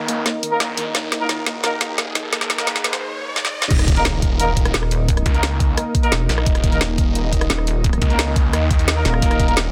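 A snarling, growling distorted saw bass drives this futuristic, aggressive slice of dark technical drum and bass at 174 BPM, with an up-front drum kit of woody snare and bright hats, and a soft round pluck arpeggio under a filter sweep through the build-up until 3.0 seconds, while a background riser climbs toward the drop. At 3.7 seconds a knocking, overdriven kick lands with an impact, and at 4.7 seconds a heavy pulsing wobble bass joins the mellow brass stabs, which carry a light vintage vibrato. Beneath it all, a deep, moody ambient pad and an airy, breathy pad sustain in the background with sidechain pumping, all in a dense, heavily limited mix cut from a longer piece.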